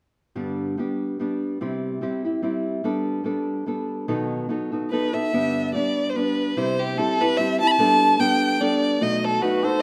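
Mariachi-flavored Mexican folk in a lilting, swung 3/4 at 146 BPM in G major, this romantic, festive fragment from a longer piece opens with a small, fingerpicked nylon-string guitar, warm and up front, cycling through G, C, Gadd9 and B7. At 4.9 seconds a single bowed violin enters up front with the melody, its tone focused and smooth on top with a singing vibrato. A warm, classical-style solo trumpet adds a brief second line at 9.4 seconds, all set in a moderate scoring-stage reverb.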